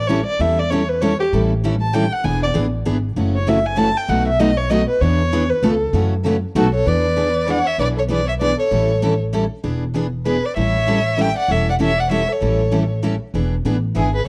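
A dry, close studio sound in the manner of the 1970s frames this lively excerpt of acoustic string swing in the jazz manouche style, moving at 195 BPM in 3/4 with a swung eighth-note feel and centred in E mixolydian. A dark-toned violin with a smooth top carries the solo through the opening stretch, bowed up front with vibrato and expressive portamento. Beneath it, a woody, growly upright bass played pizzicato anchors the harmony. Two picked steel-string acoustic guitars supply the accompaniment: one bright and fresh-stringed with audible finger squeak, the other a full-bodied jumbo sitting in the background. At 6.6 seconds a second violin enters with the melody, its soft attack, vibrato and sliding portamento giving it a warm, singing voice, and from 6.9 seconds the dark violin settles into a supporting line as a new passage begins. The harmony circles dominant-seventh chords such as A7, E7 and B7, with a brief C#aug7 adding colour along the way.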